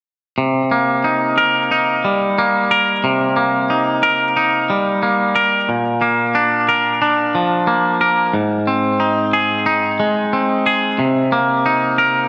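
Cinematic and cathartic, this rock piece moves at 90 BPM in a straight 4/4 and sits in C minor, tuned slightly sharp to A4 = 445 Hz. A single twangy electric guitar carries the whole passage alone from 0.4 to 12.3 seconds, ranging from Ab2 up to Bb4. Its tone is clean, picked and compressed, placed up front, with slapback echo and digital delay trailing each note. The harmony moves from Cm7 through Bb at 5.7 seconds and Ab at 8.3 seconds before returning to Cm7 at 11.0 seconds. A wet recital hall reverb and a big arena sound give this fragment of a longer piece a spacious, dramatic scale.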